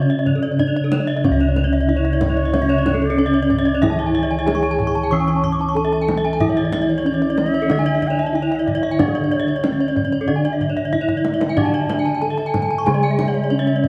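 This is a brilliant, shimmering passage of Balinese gamelan in a straight four, cut from a longer piece, and it opens at once on a bed of bronze metallophones and bossed gongs. The bronze metallophones are tuned in pairs, so their ringing notes carry shimmering beats. A mid-range metallophone carries the melody, with a lower one in accompaniment and two higher ones spinning arpeggios. One metallophone is struck with padded disc mallets for a mellow, soft tone. Another, played with a wooden mallet, sounds close, dry and full, while the horn-mallet instruments range from dark and smooth to boxy. The padded gongs hold the bass with a round, beating, mellow sound. A deep, vintage-sounding kendang played with soft hands joins at 0.3 seconds and adds a drum fill at 10.8 seconds, and an airy bamboo bansuri enters at 1.9 seconds with vibrato, a crisp attack and lifted highs as a second line. A moderate concert-hall reverb and a dark, warm production wrap the ensemble.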